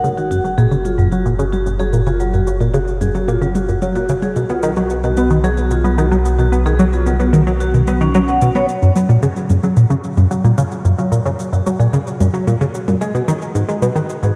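A straight 4/4 pulse at 111 BPM drives this expansive, luminous stretch of ambient, sequencer-driven space music, cut from a longer piece. A tight, up-front riff on a detuned sawtooth-and-square synth carries a filter-swept pluck through chorus, phaser and delay, over a round sine sub bass that drops out at 8.7 seconds, while electronic, analog cabasa and toms echo through their own delay. A metallic, ringing vintage vibraphone, played with medium mallets and motor off, spins arpeggios from 0.2 seconds and fades in anew from 8.7 seconds, as the harmony moves from B5 to G#m7 inside a lush hall reverb and the warbly pitch drift of worn cassette tape.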